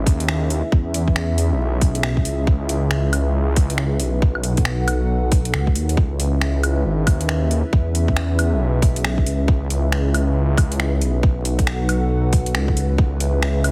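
Future garage with a rainy, nocturnal mood, this short cut from a longer piece rides a swung 4/4 groove. A deep, moody analog pad of detuned saw, square and triangle waves holds sustained chords throughout, its slow attack and long release softened by chorus and pumping under sidechain compression, with a ring-modulated edge and a sub octave beneath. Up front, a menacing detuned saw bass in unison layers with sine and evolves through a filter swell, saturated and pumping along with the pad. A tight, layered electronic kick sits prominently in the mix, while a lighter garage kit adds claves, finger snaps and metallic hi-hats, both drum parts touched with studio reverb. The chords cycle from C#m7 through E6 to B7 twice, landing back on C#m7 at 13.0 seconds, and the whole mix has a heavily compressed radio quality dusted with vinyl crackle.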